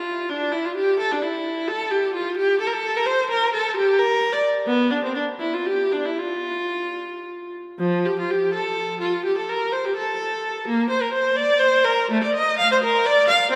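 This classical, baroque-style suite movement for unaccompanied viola unfolds in F major with a serene, radiant mood. The pulse is felt in dotted quarters at 67 to 90 BPM in 6/8, shaped with a free rubato, and the instrument is tuned to A4 = 441 Hz. A single bowed viola carries the whole passage, its clear, focused tone coloured by vibrato and spanning F3 to F5. The instrument sits up front yet carries a distant quality, bathed in a wet church reverb with a 3.5-second decay. The music moves through two sections, the first phrase running to 7.8 seconds and a contrasting second one continuing until the cut at 13.6 seconds, as this is a fragment taken from a longer piece.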